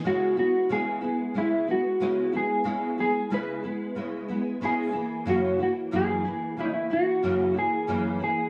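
Dreamy and sunny, this indie pop excerpt at 92 BPM in 4/4 sets a dark, clean electric guitar melody, shaded by analog chorus and slapback echo, over a fingerpicked classical nylon-string guitar accompaniment, its audible finger squeaks run through ensemble chorus and a vibrato effect, with both guitars up front in a small room with light digital ambience as the harmony moves from C#m7 to F#7 at 4.9 seconds.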